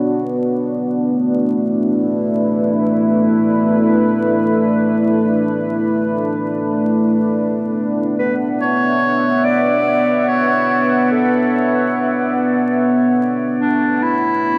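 A deep, dark ambient pad opens the recording, its detuned sawtooth voices and sub octave softened by chorus as slow-attack sustained chords move from Asus24 to Bmadd9 and back. At 8.2 seconds a soft-edged clarinet enters with a solo melody in a classical style, sounding distant and roomy under a dub echo. The mix is soaked in a lush hall reverb with vinyl crackle, leaving a moody, spacious, dreamy atmosphere.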